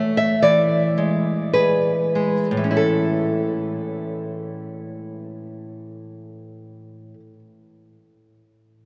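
A small, fingerpicked nylon-string guitar sits up front in a wet cathedral reverb, playing a serene, warm classical accompaniment with a rubato feel that slows down through the first 2.8 seconds before moving from an E7 chord to A, in an excerpt cut from a longer piece.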